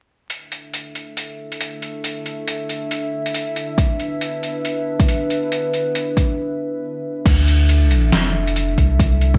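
Light reverb and vinyl crackle color a bright, 1980s-style digital production in this short, meditative and dark cut from a longer deep dubstep piece in D dorian, moving at 138 BPM in a half-time 4/4 feel with a 60% swing on the sixteenths. A moody analog pad holds sustained chords throughout, its detuned square and sawtooth layers, sub octave and wave-folded edge softened by a subtle chorus, a slow attack and a long release. Alongside it, a sampler-style trip hop kit of crash cymbal, hi-hat and a medium-tuned snare sounds compressed, pitched down, gritty and tape-warm, with studio reverb. An overdriven, layered electronic kick enters at 3.8 seconds, sitting up front with the air of a large room. After a break at 6.4 seconds, the second section arrives at 7.3 seconds as the harmony shifts from D5 to Dm and a round, soft dub sub bass with a fast attack joins, holding low sustained notes beneath the pad.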